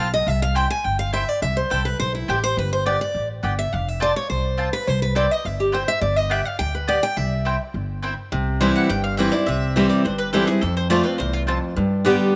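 Set in a small room with light reverb, this rustic, joyful bluegrass passage in C major races along at 209 BPM, with a bright, up-front picked steel-string acoustic guitar, finger squeak and all, taking the solo for the first 8.3 seconds over woody, double-strung mandolin stabs and a dark, thumpy pizzicato upright bass on gut strings, before a second, warm picked mandolin carries the melody from 8.8 seconds.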